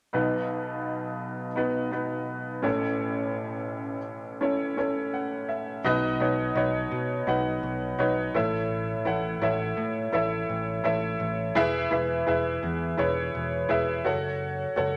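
A straight 4/4 pulse at 84 BPM carries this anthemic, uplifting pop excerpt, tuned to A4 = 445 Hz, where an up-front, woody upright piano with a worn, slightly detuned character and audible action noise plays accompaniment over B, A, E and F#m chords, adds a fill from 4.4 to 5.8 seconds, and is joined at 5.8 seconds by a punchy picked electric bass, all set in a wet club reverb.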